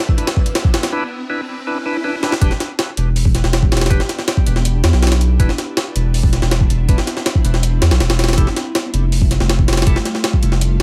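A straight 4/4 drum part from a gritty, pitched-up sampler-style jungle drum kit, with a thumpy kick, high-tuned snare and hi-hat, drives this dark, nostalgic drum and bass cut from a longer piece, overdriven and up front alongside a deep, saturated sine sub bass. A faint twinkling granular shimmer stops at 0.9 s while an electronic riser and swell build toward the drop at 2.4 s, where the chords move through Em7, Cmaj9/E and Fmaj9. An ethereal detuned pad sits in the background with chorus, reverb and phaser, and a reedy tonewheel organ plays stabs through a slow rotary speaker with 12-bit sampler grit and dub echo until 10.0 s.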